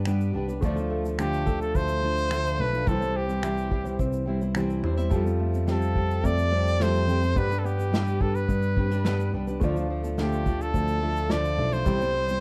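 A brilliant trumpet carries the melody, entering at 1.2 seconds up front with pop-style vibrato and a plate reverb, setting a sunny, carefree tone in this acoustic pop excerpt at 107 BPM in a straight 4/4, in C major. Beneath it, a worn, slightly out-of-tune tine electric piano holds down the bass through a combo amp, sitting clean and prominent in the mix. A full-bodied jumbo steel-string acoustic guitar is fingerpicked for accompaniment, while a small nylon-string guitar plays arpeggios in the background with a slapback echo. A bright upright piano adds very quiet, woody accompaniment with audible action noise, giving an intimate touch. An unplugged drum kit, coming in at 0.1 seconds, plays bundle sticks on a medium-tuned snare alongside a punchy kick, shaker and finger snaps, recorded airy and polished in a small room. The chords move through G, Dm, C and Fadd9 under a moderate studio reverb and a dark, warm production.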